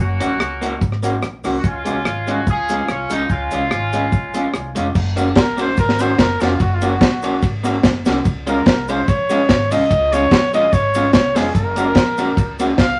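A lightly swung 4/4 ska groove at 145 BPM drives this joyful, upbeat cut from a longer piece. A dark, dry reggae drum kit with a high-tuned snare and tight kick anchors it, alongside woody pizzicato upright bass, slightly broken-up lo-fi electric guitar with tape echo, and a grainy cabasa tucked in the background. A clear, punchy vintage horn section carries the melody over Gb and Db chords until 4.7 seconds, then a close-miked trumpet with light vibrato takes a solo from 5.4 seconds to the end, with the horns, trumpet, guitar and drums sitting up front in a wet studio reverb.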